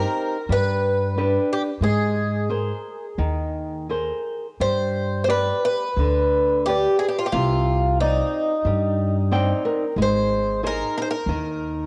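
Tender and nostalgic, this rubato fado-style ballad, cut from a longer piece, sets a bright, shimmering, octave-doubled twelve-string acoustic guitar melody with audible finger squeak up front over fingerpicked flamenco guitar accompaniment colored by cassette tape and a woody pizzicato upright bass with tube saturation, while a nylon-string guitar fill slips in from 9.0 to 10.0 seconds, all in a lush hall reverb with the intimate character of a home cassette recording.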